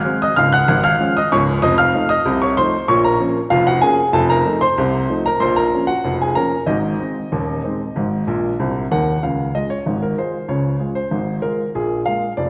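Ragtime piano in D-flat major, lively and cheerful, moving at 95 BPM in a straight 2/4 feel. A single upright piano carries the whole piece alone, ranging from deep D-flat in the bass up to high G-flat, with a woody, natural tone, long sustain and an up-front presence. The harmony moves between D-flat, F7, B-flat minor and A-flat before the piano plays a short fill at 8.3 seconds that leads into a new section at 9.2 seconds, which returns to D-flat and turns toward B-flat seven. The piano sits in a generous scoring-stage reverb with a 1.6-second tail, recorded in a church or concert hall where a faint mains hum lingers beneath the playing. This short passage of about 12.5 seconds is cut from a longer piece.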